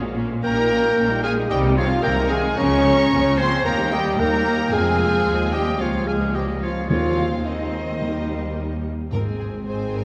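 Violas, cellos and double basses open this cheerful, graceful classical-period movement for symphony orchestra, a quick 4/4 passage in Ab major at 112 BPM, cut from a longer piece. At 0.4 seconds the violin section takes up the melody with a lush, smooth, vibrato-rich tone high above, while a second violin section, a clear oboe and a background clarinet carry a second line and a mellow French horn section holds sustained chords beneath. The violas and cellos stay in the background, the cellos sounding intense, while the double basses sound distant and expressive, supporting a harmony that moves from Eb7/Bb through Bbm7/Db and Fm before settling on Ab. Timpani struck with hard mallets enter at 6.9 seconds, articulate and set back in the mix. The clarinet and oboe drop out at 8.8 seconds as the strings, horns and timpani carry on to the close. The whole ensemble sits in a wet concert hall reverb and carries the warbling pitch drift of worn old cassette tape.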